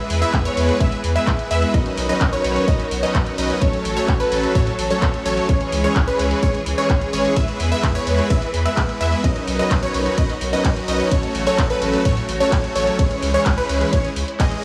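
A moderate digital room reverb and a small room ambience frame this triumphant, anthemic festival progressive house excerpt, cut from a longer piece and running in a straight 4/4. Up front, huge detuned supersaw chords carry the riff, bright and sustained with a fast attack, echoed by digital delay and pumping under sidechain compression. A punchy, wave-folded unison pluck spins arpeggios between B4 and E5, shaped by its noise layer and a moving notch filter sweep, and it is also treated with delay and sidechain pumping. Beneath them, a deep, saturated sine sub bass enters at 0.1 seconds and pumps along, while a smooth, distant bowed string section holds lush sustained chords with vibrato in the background. A house drum kit of handclaps, bright hi-hats, ride cymbal and rim clicks comes in at 0.1 seconds, and a layered electronic kick lands punchy and forward from 0.3 seconds. The harmony cycles twice through E, Badd9, F#m/A and C#m, giving the whole passage a soaring, uplifting lift.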